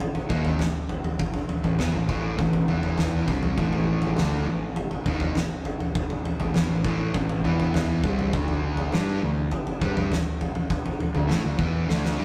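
A rough rehearsal-room recording with tube saturation and light reverb captures this hypnotic, heavy stoner and doom metal passage at 101 BPM in 4/4, where an oversized low-tuned drum kit with a punchy kick, fat snare and pumping stone-room sound drives alongside a double-tracked, picked fuzz guitar riff and a growly, overdriven fingered bass, moving through A5, E5, C5 and D5 power chords before a drum fill at 11.9 seconds.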